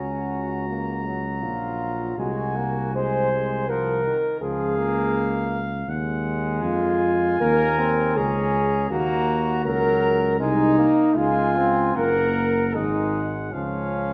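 In a rubato three-four metre, this solemn, grave classical brass quintet excerpt sets a distant, warm trumpet melody above a roomy flugelhorn second line, while a soft-attacked French horn with light vibrato and a bright, vintage trombone fill out the accompaniment and an up-front, mellow tuba anchors the bass, the group playing together for the full 14.1 seconds inside a wet recital-hall reverb with a dark, rolled-off top end.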